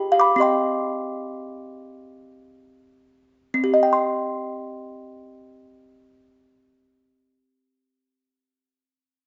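A lone music box opens this short classical lullaby, its delicate, tinkling plucked tones sitting up front in the sound. The mood is eerie and wistful, set in a gentle triple metre with a straight feel, and the melody ranges from C4 up to D6 in a mellow, soft voice. Over the first 3.5 seconds the pace gradually slows, before a second section begins and carries the tune on until the box falls silent at 7.3 seconds. A moderate recital hall reverb gives the small instrument a sense of space, while the dulled top end keeps its sparkle muted and intimate. This fragment is cut from a longer piece, leaving the brief melody hanging in the air.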